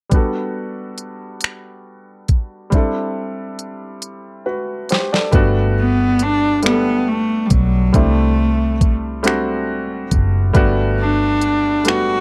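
Slow six-eight R&B in G major at 46 BPM, tender and intimate, where a clear grand piano with audible action noise and a produced drum kit of finger snaps, smooth hats, knocking kick and deep snare sway over Gmaj9 and C69 chords, a fill at 4.0 seconds leads in a dark, foam-muted fingered electric bass at 5.3 seconds and a rich, nasal bowed cello melody with light vibrato at 5.8 seconds, all captured in a dry, close 1970s-style studio sound cut from a longer piece.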